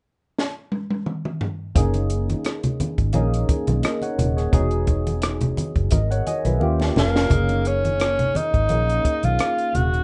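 A rough home-demo mix in a small, moderately reverberant room, with a dull top end, frames this lush, smooth 1970s-style soul fragment with a light swing. A compact cocktail kit with a high-tuned snare and punchy kick opens with a fill at 0.4 seconds. At 1.8 seconds a round, foam-muted fingered bass, soft low-tuned congas in the background and a barky tine electric piano join over chords such as F#69 and Emaj9, with the piano lightly overdriven through an amp and treated with phaser and plate reverb. At 7.0 seconds a vintage-toned tenor saxophone with vibrato takes a jazzy solo up front, bathed in plate reverb.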